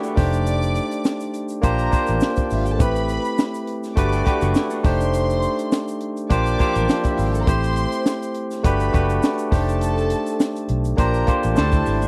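Warm and smooth, this short excerpt of lush 1970s-style soul moves at 103 BPM with a gentle sixteenth-note swing, built on a barky, clean tine electric piano up front and a round, foam-muted fingered bass, with a compact cocktail kit of punchy kick, high-tuned snare and hi-hat plus a grainy tube shaker sitting in the background. A dark studio violin section plays a soft-attacked, intimate second line with light vibrato, while a slightly broken-up electric guitar through a small old amp adds a very quiet picked riff, with a brief touch at the very start, a longer passage between 4.0 and 7.5 seconds and again near the end. The chords cycle through lush extended harmonies like F13, Bb69, Am9 and Gmaj9, settling on D9sus4, all captured in a dry, close studio sound with little reverb.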